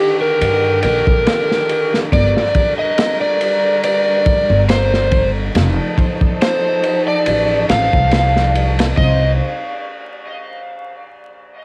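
Hypnotic and melancholic, this trip hop excerpt sets an up-front overdriven slide guitar melody, roughened by vintage 12-bit sampler grit and dub echo, over soft-edged, sul tasto sustained chords from a dark chamber string section, joined at 0.4 seconds by a woody, thumpy pizzicato upright bass and a crunchy, saturated breakbeat kit of punchy kick, medium-tuned snare and ride cymbal, the whole mix sitting in light reverb with home-cassette character and vinyl crackle.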